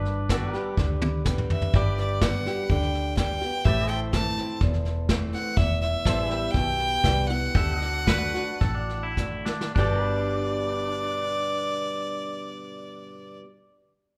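A straight 4/4 pulse at an easygoing 100-125 BPM carries this down-home honky-tonk and classic country passage in G major, cut from a longer piece. It opens with a short clean, twangy electric guitar solo and a drum fill before the clear fiddle takes the melody at 1.5 seconds, its light vibrato and earthy, smooth-topped bowing sitting up front. Underneath, a boxy parlour-style steel-string acoustic guitar is picked throughout, a round, foam-muted fingered electric bass holds the low end, and a dark vintage kit played with brushes keeps time with a tight kick and medium-tuned snare until it drops out at 9.9 seconds. A pedal steel guitar, played with fingerpicks and slide and using volume swells, adds sustained chords in the background, while the twangy electric guitar returns at 8.1 seconds with a second line. The harmony moves from G through Am, Em and D back to G, the tempo slows from 5.6 to 9.8 seconds with a second drum fill closing that stretch, and a moderate recital-hall reverb gives the whole a roomy finish.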